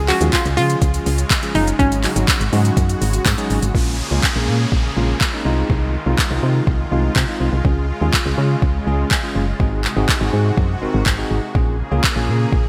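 A punchy, round FM bass sits up front in this summery, upbeat dance-pop excerpt at 123 BPM in Db major, pumping with sidechain alongside a smooth R&B drum kit whose soft kick, metallic hi-hat, handclaps and shaker carry gated reverb. A hollow, bouncy square-wave pluck with a filter sweep, chorus and digital delay plays the melody only until 3.2 seconds, with a jingly tambourine barely audible beneath it. A lush, airy, detuned supersaw pad with a noise layer holds sustained chords, while a bell-like tine electric piano adds clean accompaniment, both also shaped by sidechain pumping. At 3.7 seconds an electronic downlifter enters as the harmony moves from Db and Ab7sus4 to Bbm7 and Fm7/C, then returns to Db and Ab7. Light reverb and digital ambience frame the bright, 1980s-style digital production.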